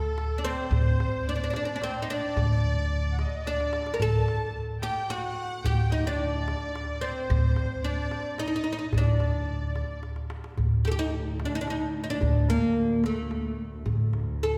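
A woody, fretless oud carries the melody up front in this soulful, longing Arabic maqam ensemble piece in D hijaz at 110 BPM in 3/4, joined by a shimmering musette accordion and a biting chamber violin section on a second line until 10.0 seconds, a clay-shell darbuka played with hard hands, a pizzicato upright bass, and a soft-attack, floating cello section drone that arrives in the background at 10.6 seconds, the ensemble heard from further back in a reverberant concert hall.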